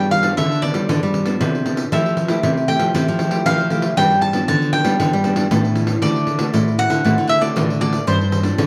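A straight 4/4 groove at 117 BPM drives this playful, joyful samba and choro fragment, with a jingly pandeiro keeping time under a picked, woody mandolin melody whose doubled strings ring out in its upper range. One nylon-string guitar fingerpicks classical-style accompaniment while a second, boxy nylon-string guitar carries the bass line with audible finger squeak, moving through G7, Fmaj9 and D7 before arriving on G7sus4 at 8.1 seconds. A moderate large-studio reverb surrounds the dark, warm production.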